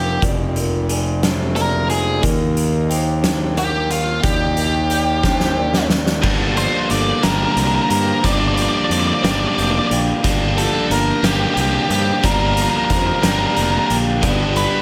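A biting overdriven guitar riff pushes up front from 6.2 seconds, joining a growly fuzz bass and an oversized, low-tuned drum kit with a boomy kick, fat snare and dark cymbals in a pumping big room, as a drum fill carries the music into its heavier second half. Above them an octave-fuzz lead guitar sings a melancholic melody with slapback echo, while a twangy electric guitar through a small old amp and a ringing vibraphone with slow motor vibrato spin arpeggios in the background. This cathartic post-rock passage in a straight 6/8 moves from Bb7/F and Ebmaj7 to a long Gm7, landing on G major at 14.2 seconds.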